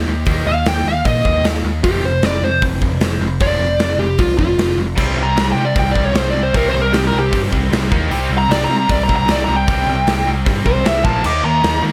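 Powerful and swaggering, this hard rock excerpt drives along at 153 BPM in a straight 4/4, led by an up-front, dark, bluesy overdriven lead guitar soloing through distortion and analog delay above a gated 80s drum kit with bright cymbals, a punchy kick and a gated stone-room sound. A growly, overdriven picked bass and a heavy high-gain guitar riff sit underneath from the start, and at 5.0 s a double-tracked high-gain guitar and a very quiet, tight distorted guitar join the riff. The whole mix carries a light reverb.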